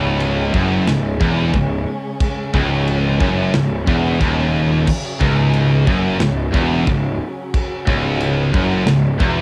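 A straight 4/4 pulse at 90 BPM drives this heavy, epic metal excerpt in C# minor, which rests on a single C#m chord for its 9.4 seconds. Three picked electric guitars share a low riff. A scooped, high-gain guitar sits up front, while a distorted guitar and a double-tracked, overdriven cranked-stack guitar stay in the background, all three bright. Beneath them, a picked electric bass adds a growly, fuzzy weight. An acoustic drum kit enters at 0.2 seconds, up front in a small room, with a tight kick, medium-tuned snare, and crash and china cymbals. Far behind everything, a very quiet chamber string ensemble holds dark, bowed chords with expressive vibrato, and the recording has a moderate booth ambience and the rough character of a home cassette tape.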